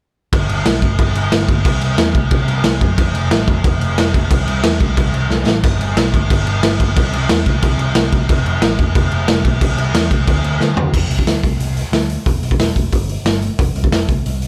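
A gritty, saturated garage drum kit sits up front in a small, pumping room, its punchy kick, medium-tuned snare, hi-hat, toms, crash and splash cymbals carrying a rolled-off top as it drives this rebellious, rowdy punk rock fragment at 181 BPM in straight 4/4 alongside a bright, growly, amped and overdriven picked electric bass down low, with drum fills at 5.3 and 10.6 seconds, a new section arriving at 10.9 seconds, and a dry mix with little reverb.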